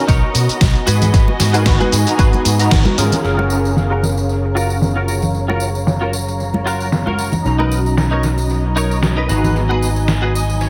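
A barky, overdriven tine electric piano and dark, veiled con sordino strings pumping under a low-pass filter open this feel-good, groovy nu-disco excerpt in F# major at 114 BPM with a light 16th-note swing, joined at once by a twangy, clean picked guitar riff, an up-front, envelope-filtered fingered bass, a gritty sampler-style kit with a fat snare, bright, close congas and tambourine, and a punchy, layered electronic kick that drops out at 2.8 s just after a band accent at 2.7 s, before filter sweeps on the drums, guitar and strings from 3.2 s carry the echo-heavy, chamber-reverb mix through Bmaj7, G#m7 and F#maj7 to a closing guitar fill.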